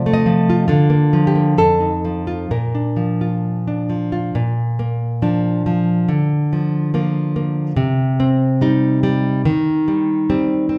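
Passionate and melancholic, this brief romantic passage for solo classical guitar, cut from a longer piece, features a dark, fingerpicked nylon-string guitar placed up front in a wet large-studio reverb, moving with a rubato feel in 2/4 through chords from F/C and Bb/D to F7, Bb, Cm and Cm/Eb as its opening part gives way to a new section at 4.4 seconds.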